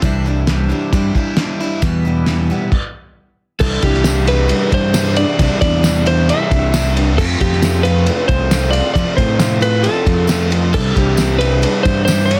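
Folk rock and heartland rock with a hopeful feel: an up-front punchy fingered bass and a muffled, cloth-damped drum kit with a fat snare and dark cymbals drive picked steel-string acoustic guitar, double-tracked crunchy overdriven guitar and a very quiet, reedy tonewheel organ with key click and slow rotary speaker, until a brief stop at 2.7 seconds gives way to a dark, compressed lap steel slide melody at 3.6 seconds and a jingly tambourine at 4.1 seconds, all in a dense, dry, heavily limited mix.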